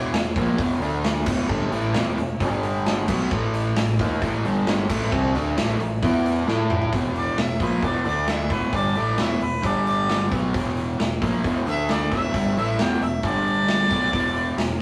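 A pair of crunchy overdriven electric guitars opens this gritty, driving classic rock piece at 133 BPM in a straight 4/4. One guitar is bright and up front while the other sits very quietly beneath it. Together they pick a riff that moves through E5, D5, Em, G5 and A5 chords. A growling fingered electric bass, overdriven and direct, and a big, punchy acoustic drum kit with bright cymbals and a medium-tuned snare push the groove from the start. A drum fill at 6.5 s leads into the second section, where the music settles in E minor and a warm harmonica with light vibrato enters at 7.2 s to take a roomy solo through the end of this cut from a longer piece. The whole recording has the rough, tube-saturated character of a rehearsal room, with a moderate stone-room reverb.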